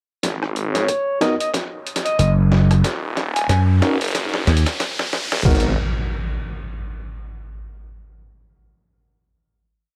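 A dry, gritty hardware recording with digital ambience carries this short, playful glitch hop piece at 92 BPM in G# minor, swung on the 16ths, building until 5.5 seconds and then resting on a final G#m7 chord. Pitched-down, compressed sampler-style drums sit under a swirling, thick, phased and detuned saw bass of chopped phrases: a thumpy, tape-warm electronic kick in the background, plus snare, rim, closed hat and crash in a swung beat with edits. From 0.7 seconds an overdriven harmonica plays short, scooped jazz-style solo phrases with vibrato and tongue slaps through tape echo, and from 1.2 seconds a clean tine electric piano adds sparse, echoing rootless chord stabs with sampler grit and sidechain pumping, both under filter sweeps. From 2.2 seconds a punchy, growly slap bass comes up front answering the other bass, and a riser and impact supply the transition effects.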